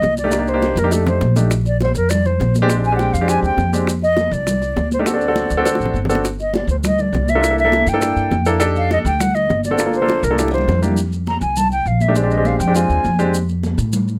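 Closely miked and dry, this lively, danceable Afro-Cuban jazz excerpt in F mixolydian moves at 203 BPM in a straight 4/4, with an airy, expressive concert flute carrying the melody up front alongside a present baby grand piano's chords and a woody, thumpy pizzicato upright bass, while round, low-tuned bongos, bright, thin high-tuned congas set back in a distant large room, and grainy maracas fill in the groove with short drum fills before the bongos drop out at 11.0 seconds and the flute takes a solo.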